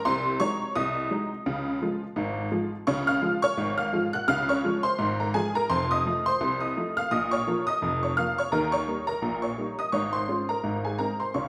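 Ragtime piano in a lively, cheerful mood, this short cut from a longer piece features a solo honky-tonk upright piano with a detuned, jangly, vintage character that sits bright and up front, ranging from F1 to Gb6. The 2/4 feel carries a light swing on the sixteenths, and the harmony moves through Ab7/C, Db, F7, Bbm and Eb7 before settling on Db/Ab and Ab. A wet large-studio reverb gives the piano a roomy, live-in-the-room sound.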